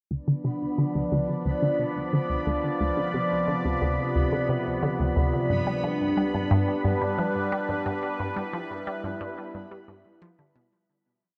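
Ambient, sequencer-driven space music with a cosmic, expansive mood, set in a straight 4/4 and bathed in a huge reverb within a dark, warm production. A sweeping resonant pad of detuned, wave-folded sawtooth and triangle tones holds sustained chords up front, its filter swelling slowly under chorus and phaser as the harmony moves from Dm7 to G at 5.5 seconds. Beneath it, a juicy, squelchy blip pluck repeats an 8-step sequence in the low register, its ring-modulated, noise-edged sawtooth snapping open with a fast attack and short decay through phaser and analog delay. Higher up, a quieter bubbling texture of detuned sawtooth holds a high note while its resonant filter jumps in random steps, softened by chorus and its own reverb. A filter sweep runs across the synth arpeggio sound throughout, and the whole piece fades out from 7.3 seconds to its close at 10.9 seconds.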